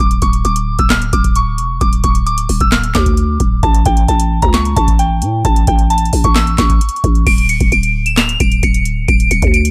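Melancholic and dark, this half-time trap fragment sets a soft, pure FM synth bell melody, touched with chorus and delay and riding high, over a growling, buzzy 808-style bass and a booming, overdriven analog drum machine whose deep kick, crisp snare, handclaps, metallic hi-hats and crash cymbal sit up front in a dry mix, with the drums entering at 0.1 seconds.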